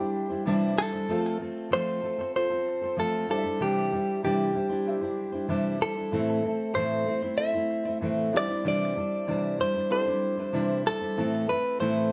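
Acoustic pop at 95 BPM in C major, sunny and easy-going, with a clean, direct-recorded electric guitar carrying a compressed, scooped melody with delay up front beside a bright, full-bodied fingerpicked steel-string acoustic guitar, while a felt-muted upright piano sits boxy and intimate in the background with audible action noise, all played live in one room under moderate studio reverb over Cadd9, F and Am chords in this 12.1-second excerpt cut from a longer piece.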